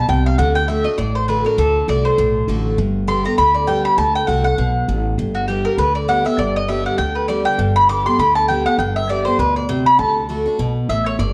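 Mandolin, picked steel-string acoustic guitar and upright bass start together on this lively, driving 200 BPM bluegrass excerpt in G major, tuned to A4 = 435 Hz with a light swing. An up-front, woody double-strung mandolin carries the melody over the bright, full-bodied guitar with its fresh strings and audible finger squeak, while the dark, thumpy gut-string bass anchors the D and G changes, all set in a wet large-studio reverb and worn, warbling cassette tape with drifting pitch.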